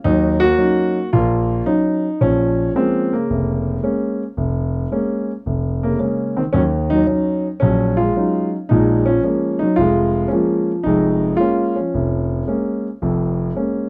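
A dry, close recording in a 1970s studio style puts a dark concert grand piano up front, its mellow tone, deep bass and short sustain carrying this late-night solo jazz passage, cut from a longer piece. Swinging at 111 BPM in 4/4 in Bb minor, tuned to A4 = 438 Hz, the piano plays alone from 0.0 to 13.9 seconds across a range from F1 to Gb4. Its harmony moves between Ebm7 and Bbm7 throughout.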